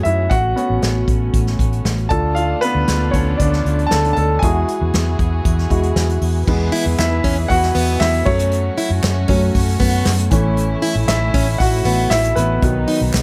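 A straight 4/4 pulse at 117 BPM drives this uplifting, hopeful piano-driven pop excerpt in A major, where a clear, polished baby grand leads up front over a tight-kicked, roomy acoustic kit played with bundle sticks and a round, punchy, foam-muted vintage electric bass. Dark, floating strings hold soft-attack sul tasto chords beneath, moving through harmonies such as Dm, Eadd9 and F#m. At 6.7 seconds a picked steel-string acoustic guitar adds a riff with audible finger squeak, joined at 7.0 seconds by very quiet, crisp, close handclaps, all set in light studio reverb.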